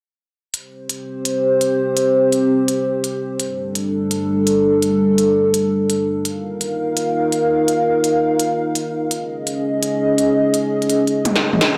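Soaked in a dreamy plate reverb, this spacious, tense cut of half-time drum and bass at 168 BPM sets a dark, detuned analog pad with chorus and gritty 12-bit sampler texture, holding slow-attack chords from C5 through Gsus2, Ebsus2 and Dbsus2, against an up-front industrial kit of clanging snare, crisp hats and toms that enters at 0.5 seconds and closes on a drum fill at 11.3 seconds.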